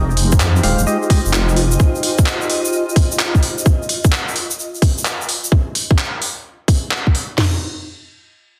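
A warbling analog pad, hollow organ stabs with phaser and tape echo, and a deep, dark, pumping wobble bass open this late-night, skippy two-step UK garage cut on an Fm9 chord in F minor at 129 BPM with swung 16ths. A blurred granular cloud pad drifts in at 0.7 seconds, joined by a grainy tube shaker, handclaps and crisp hi-hats, and an up-front kit of tight kick, cracking snare, toms and crash re-recorded in a large room, before the chords fall away at 3.7 seconds in a dense, heavily limited mix.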